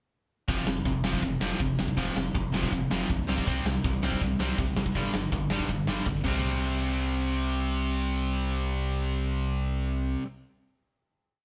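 A big acoustic rock drum kit sits up front, driving a two-step groove with a punchy kick, a medium-tuned snare, hi-hat and crash cymbals that sparkle over a darker, smooth shell sound. This is a short, upbeat and energetic punk rock piece at 162 BPM in a straight 4/4, with the full band starting at 0.5 seconds. Two electric guitars play palm-muted eighth-note riffs through a chord sequence of F5, C5, G5 and C5. One has a tight, bright distorted tone, and the other is a warm, compressed overdrive. Beneath them, a deep, clean sine sub bass holds sustained, fast-attack driving eighth notes. The drums stop at 6.3 seconds for a final hit, and the guitars keep playing until 10.3 seconds, all captured as a band playing live together in one room with light reverb.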